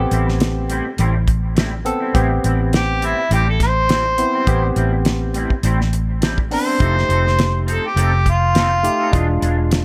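A straight-eighth groove with a light sixteenth-note swing drives this soulful, brooding soul-blues excerpt, where a dry, damped 70s drum kit with a fat snare and tight kick and a round, punchy, foam-muted fingered electric bass sit up front beneath a mellow harmonica melody with scooped notes, light vibrato, overdrive and analog delay, while a barky tine electric piano accompanies through a combo amp and a twangy clean electric guitar adds stabs with analog chorus and delay over chords moving from Am7 to F7 at 6.8 seconds and E7b9 at 9.1 seconds.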